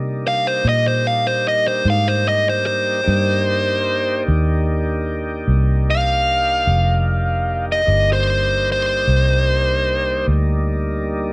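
Soulful and brooding, this slow blues in 12/8 is cut from a longer piece and hangs on a single Cm7 chord, with a tonewheel organ holding smooth, clean sustained chords through a slow rotary speaker and a hint of key click. Beneath it, a vintage foam-muted fingered electric bass sits up front with a dark, round, punchy amped tone. A smooth overdriven lead guitar, picked and warm with plate reverb, carries the melody from 0.3 to 10.3 seconds, all within a light room reverb.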